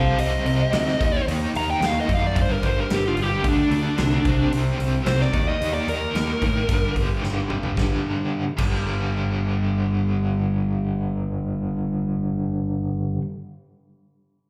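Hard rock in G minor at 111 BPM, this menacing, driving cut from a longer piece opens with a dark, smooth overdriven lead guitar solo sitting up front with slapback echo until 6.9 seconds. Beneath it, a biting, double-tracked electric guitar riff with tremolo and slapback echo runs alongside a growling, round overdriven picked bass. A big acoustic rock kit with a punchy kick, medium-tuned snare and bright cymbals plays a fill at 7.2 seconds before dropping out at 8.7 seconds, all heard through the club reverb of a live gig.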